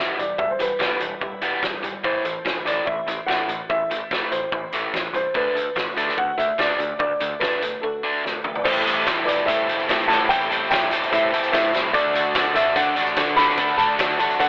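A dark, worn upright piano carries the melody in this bittersweet, cool indie rock excerpt, its woody tone slightly detuned with audible action noise, over an up-front overdriven electric guitar riff, a very quiet clean twelve-string electric guitar riff, a growling overdriven bass, and a loose drum kit with a fat snare and punchy kick. After a drum fill at 8.2 s, a new section opens around 8.7 s, where a shimmering, dreamy FM bell with chorus and phaser adds a second line, joined by faint sawtooth string-machine violins holding sustained chords and a jingly tambourine. The mix sits in a small room with light reverb and a telephone-like sound.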